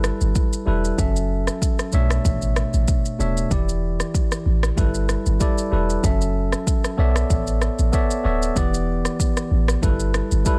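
A lightly swung sixteenth-note groove in four drives this smooth, sultry afrobeats passage, cut from a longer piece. The electronic, layered drum kit sits up front, with a deep kick, rim click and shaker. Beneath it, a boomy 808-style bass with a sine core, a noise layer and a fast attack that decays into a mellow tail holds the low end. A clean tine electric piano played through a combo amp carries the accompaniment, cycling through G6/9, F#m7, Bm11 and Em7 chords. The sound is dry, with little reverb, as the passage moves from its opening section into a second one at 3.5 seconds and plays through to 10.6 seconds.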